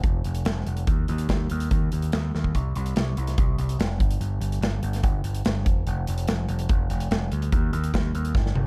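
A growling, picked electric bass with bright, overdriven tone sits up front alongside a big acoustic rock kit with a boomy kick and medium-tuned snare, both playing throughout this moody, cool indie rock fragment in a straight 4/4. The kit works across hi-hat, kick, snare and toms, dropping in fills at 2.3 seconds and again at 8.4 seconds. The production is dark and dry, with little reverb, keeping both parts close and direct.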